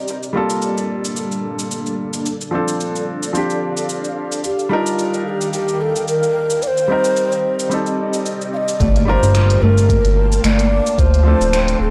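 This short excerpt has a dry, gritty cassette-tape sound with a light touch of reverb, setting a hypnotic, warm organic downtempo groove in 4/4 with a gentle sixteenth-note swing. An ethereal, airy pad holds sustained chords throughout, shimmering with ensemble chorus, tremolo and sidechain pumping while a filter sweep moves across it, and a soft, felt-muted upright piano sits up front with intimate accompaniment touched by tape echo. Crisp hats, cabasa and finger snaps from an organic electronic kit, re-recorded in a large room, keep a light pulse, and at 4.4 seconds a breathy, hollow low ney enters with the melody, its tongued notes carrying vibrato and tape echo. At 8.8 seconds the arrangement fills out as a ringing, fingerpicked Celtic harp adds arpeggios, a round, dark analog bass pumps in up front, a deep electronic kick joins, and an electronic impact sounds in the background. The harmony drifts through Gm9, Dm7, Ebmaj7 and Cm7 before returning to Gm9 and Dm7.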